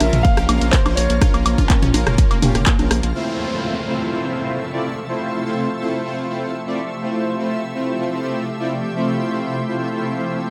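A punchy, up-front electronic kick drives the opening drop of this uplifting, expansive progressive house excerpt at 124 BPM in 4/4, running from 0.2 to 2.8 seconds alongside a round, deep analog bass that sits prominently beneath it. Through the first 3.1 seconds the drop is crowded with sidechain pumping: a dark concert grand piano plays a brief melody with digital delay, a bright unison pluck spins arpeggios in the background, and a pop drum kit adds handclaps, low-pass-filtered hats and woodblock while a dry analog drum machine contributes congas, rim clicks and toms. Over a Bb minor chord, a soft, airy supersaw fires stabs up front and a shimmering, ethereal ambient pad holds sustained chords with chorus and its own reverb, both carrying on after the rhythm section stops. At 3.2 seconds the harmony opens onto Fmaj7 and a quiet electronic downlifter descends until 7.0 seconds, leaving the supersaw and glistening pad to sustain the expansive mood under a light reverb until the excerpt ends at 10.5 seconds.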